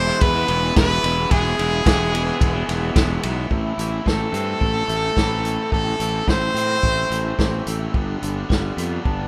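Indie rock in a cool, moody vein, this short cut from a longer piece puts a brilliant, forceful trumpet with light vibrato and slapback echo up front until 7.7 seconds, over a growly fuzz-driven fingered bass and a vintage drum kit with a punchy kick and dark cymbals, while a twangy, lo-fi guitar through a small old amp with analog chorus and a biting overdriven guitar play riffs in the background of a rough home demo mix with light reverb, moving from E to A minor and then G.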